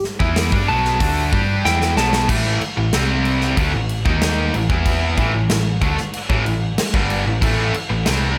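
A twangy, slightly broken-up lead guitar opens this powerful, swaggering hard rock clip with a short solo over an up-front acoustic kit of punchy kick, medium-tuned snare and bright cymbals, which plays a fill just before the lead stops at 2.3 seconds. Beneath it, a cranked stack guitar with overdrive and spring reverb sits in the background beside a tight distorted riff guitar, while a dark, round hollow-body bass anchors the low end. At 2.3 seconds a second, double-tracked distorted guitar joins the riff in the background, and the band is heard in a small room with light reverb.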